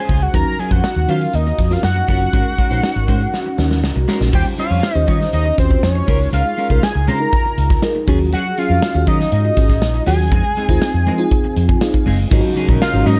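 A moody, glossy studio mix with generous reverb frames this excerpt of polished 1980s jazz-funk pop, its mood nocturnal and bittersweet over a straight 4/4 groove. A fat, detuned sawtooth lead with a sub octave carries the melody, its sustained, mellow tone colored by chorus, phaser and vibrato. Beneath it, a dreamy FM electric piano layered with a soft pad supplies lush, full-bodied chords through analog chorus, while a clean, compressed electric guitar picks a riff bathed in chorus. A foam-muted fingered bass, round and amped, sits prominently in the low end beside an acoustic drum kit whose punchy kick and medium-tuned snare are up front in a pumping room. The drums play a fill from 3.3 s, the electric piano adds fills as the harmony moves through extended chords such as Ebm9, Eb13 and Fm7, and at 12.3 s a dark, woody string section enters in the background with bowed, sustained chords.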